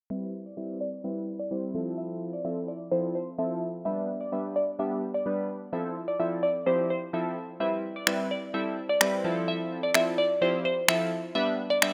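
A crystalline wavetable pluck carries a bright melody over glossy, airy chorused retro synth keys, both under a low-pass filter sweep as the chords cycle through Cmaj7, Fmaj7 and G in this carefree, summery dance-pop fragment. Electronic finger snaps with an analog bite join up front at 8.1 s. A lush hall reverb surrounds the rough home-demo mix.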